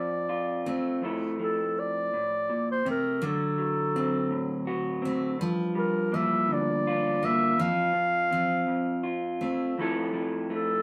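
Acoustic folk-pop ballad in a straight 6/8, tender and hopeful, where a clear, classical-style clarinet sings the melody up front over a dark, slightly broken-up lo-fi electric guitar accompaniment, while a bright, full-bodied jumbo steel-string acoustic guitar picks arpeggios until 9.9 seconds, all in a wet studio reverb, in this brief cut from a longer piece moving through chords such as Fmaj7, D7 and Gm7.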